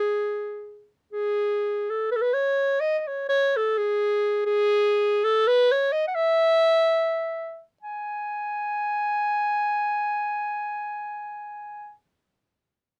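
In free time, this short Balkan folk passage unfolds as a solo clarinet line played with exuberant, virtuosic energy, the pulse floating rather than marching. The clarinet carries the whole piece from 0.0 to 11.9 seconds, moving between G#4 and G#5 with a mellow tone and soft attack shaped in a classical style. It sits up front in a dry, close studio sound with a 1970s character, framed by a moderate booth ambience that adds only a brief halo. The playing falls into two parts, the first running to about 7.8 seconds and the second following until about 11.2 seconds. Tuned slightly below standard pitch, the recording is cut from a longer piece and captures the intimacy of a single player in a small room.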